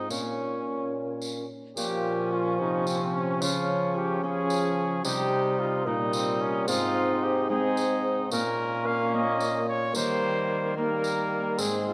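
In a straight 6/8, this courtly, solemn renaissance-style consort dance sets a mellow cornet melody over a cor anglais second line that is close-miked and played with vibrato. A clear, punchy trombone with light vibrato and a fingerpicked, ringing Celtic harp fill the accompaniment, while a distant, roomy bassoon carries the bass and a jingly tambourine sits far back in a large room. The whole fragment, cut from a longer piece, is bathed in the wet reverb of a recital hall.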